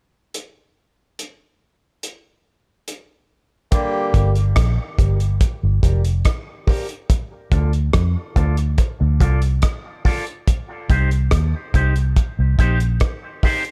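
A straight 4/4 pulse at 71 BPM opens this spacious, meditative dub reggae excerpt in G minor, with a cloth-damped drum kit playing alone from 0.3 seconds: thuddy hi-hat, tight kick and rim click, rolled-off on top and placed up front. At 3.7 seconds the harmony arrives on Gm, moving through Dm and Cm, and a brief, dark horn section punches in with light vibrato and octave doubling, sounding distant and roomy under a dub echo. From 4.1 seconds a vintage muted fingered electric bass takes the low end, foam-muted, round and amped, sitting up front in the mix. Alongside it, a clean, picked electric guitar with an envelope filter adds a twangy accompaniment, shaped by a low-pass filter and dub echo, while a filter sweep runs across the guitar to the end. The overall sound is dry, with little reverb.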